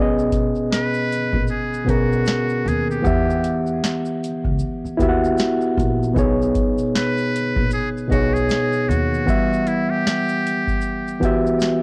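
A cosy, dreamy lo-fi hip hop excerpt with the character of a cassette home recording and light digital reverb, set at 77 BPM in B major with a lazy 16th-note swing, where a gritty, overdriven reed electric piano sits up front through a low-pass filter over woody pizzicato upright bass (which drops out at 9.2 s) and a booming analog drum machine of deep kick, crisp snare, metallic hats and shaker, while a buzzy, breathy trumpet with a metal mute carries a soft-edged jazz melody from 0.7 s as the chords move between B6 and Emadd9.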